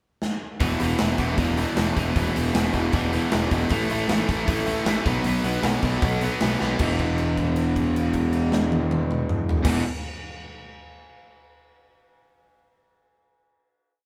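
Rowdy and energetic, this short, complete punk rock piece bursts in with a drum fill on a big rock kit, its bright cymbals, punchy kick and medium-tuned snare driving a fast punk groove up front in a big room. From 0.6 seconds two crunchy overdriven guitars, one warm and one bright, pound out driving eighth-note power chords through E5, A5 and B5, while a growly fuzz bass drives eighth notes beneath them. After another fill at 6.6 seconds, the band lands on a held final E5 chord at 6.8 seconds, the whole take sounding like a band playing live in one room with light reverb.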